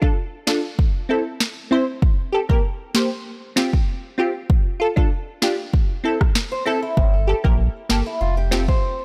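Dancehall with a bouncy, sultry mood, this short excerpt opens on crisp, detuned wavetable chord stabs that pump over an electronic drum kit with a deep kick, sharp snare and rim click, before a woody, boxy picked archtop guitar adds delayed arpeggios at 6.5 seconds and a round sine sub bass arrives at 7.0 seconds, all sounding dry.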